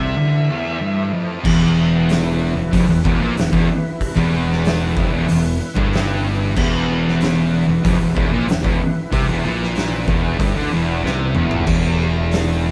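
Brooding, sludgy stoner and doom metal at 94 BPM in E phrygian, cut from a longer piece, with a dark wah-and-distortion lead guitar singing a brief E5 note over a lightly overdriven tonewheel organ holding full sustained chords through a slow rotary speaker and chorus vibrato. Thick, picked fuzz guitars grind out the low riff alongside a growly overdriven fingered bass, and a third double-tracked, bright fuzz guitar joins at 1.4 seconds as an oversized low-tuned kit crashes in up front with a fat snare, punchy kick and dark cymbals. The band sounds live in one stone room with moderate reverb, and a drum fill arrives at 11.0 seconds before the kit stops at 12.5 seconds.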